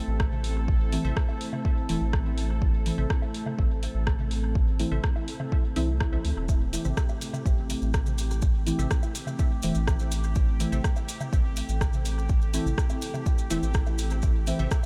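Hypnotic and deep, this dub techno cut in A minor moves at 124 BPM in a straight 4/4, resting on a single Am chord as a dark, detuned sawtooth pad with a sub octave breathes under sidechain pumping, joined by a bubbling, resonant stepped-filter texture and a round, sine-like analog bass sitting up front with a tape-warm electronic kick. A mellow chord stab with a moving notch, chorus, phaser and dub echo recurs throughout, while a crisp, digital wavetable stab with a filter pluck sits in the background alongside echoing electronic toms and woodblock, and the deep house kit adds hi-hat and rim click. Grainy maracas enter at 6.5 seconds, and the whole is set in a light digital ambience.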